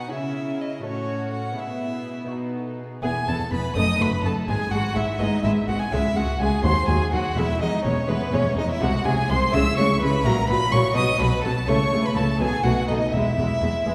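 A straight 6/8 pulse at 83 BPM, counted in dotted quarters, drives this brilliant, lively baroque-style concerto movement in E major, cut from a longer piece and opening on a C#m harmony. An up-front solo violin with warm, even vibrato carries the melody, which it shares with a focused chamber violin section in the background, while a second violin section plays an inner line above rich viola accompaniment and a mellow, fingerpicked gut-strung lute. A cello section supplies the bass from the start, joined at 3.0 s by a close, expressive double bass section, all set back in a reverberant concert hall.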